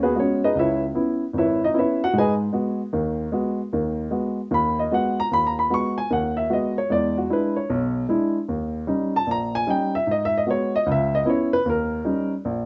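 A close, up-front baby grand piano rings through a moderate club reverb in this cool, moody solo jazz excerpt, its natural tone marked by short sustain. Played alone throughout its 12.7 seconds in a swung 4/4, the piano spans from deep bass notes to bright upper register while moving through minor seventh chords and dominant turns, settling back home near 10.1 seconds before a closing dominant chord at 11.7 seconds.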